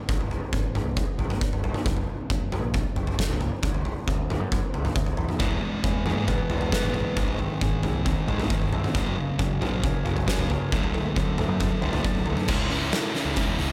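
A straight 4/4 pulse at 135 BPM drives this bittersweet, cathartic quiet-loud alternative rock fragment, where an oversized, low-tuned drum kit with a boomy kick, fat snare and dark cymbals pumps up front in a big room over a growling, overdriven picked bass; at 5.4 seconds a lo-fi guitar through a small old amp adds slightly broken-up arpeggios treated with spring reverb and slapback echo, and a thick fuzz guitar riff joins in the background over E, G#, F# and D, until at 12.5 seconds two more fuzz guitars, one up front and one double-tracked and very quiet, arrive on a C#m.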